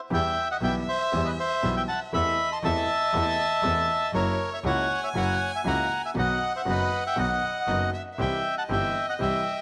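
From the first moment, a tense, sultry tango fragment cut from a longer piece opens with all five parts sounding together in a loose, rubato 4/4. A dark, reedy bandoneon carries the melody up front and mid-forward, while a close, warm violin adds a bowed second line with vibrato, soft attacks and expressive portamento. Beneath them, a clear upright piano with a woody, boxy tone and short sustain supplies the accompaniment, and a second bandoneon adds very quiet, bright stabs. A single bowed double bass sits distant but focused at the bottom. The harmony moves from Em through Amadd9/E, F#7 and B before reaching C near 8.2 seconds, all held in a moderate plate reverb that lends the small ensemble a sense of space.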